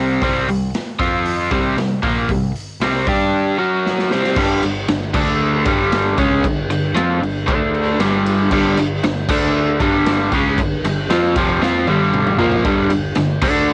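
This is a raw, swaggering garage rock clip at 116 BPM in a straight 4/4, cut from a longer piece. An overdriven, double-tracked electric guitar sits up front with a bright, cassette-tape-coloured riff built on power-chord shapes that move between C5, F5 and G5. It then settles into a G5 and D5 alternation after about 4.4 seconds. Beneath it, a growling picked electric bass, amped and overdriven, adds a punchy low end. The acoustic drum kit sounds gritty and saturated in a small, pumping room, with a boomy kick, a medium-tuned snare, dark cymbals and a rolled-off top. It fills at 3.9 seconds and again from 11.6 seconds. Light reverb and the home cassette recording give the whole thing a lo-fi feel.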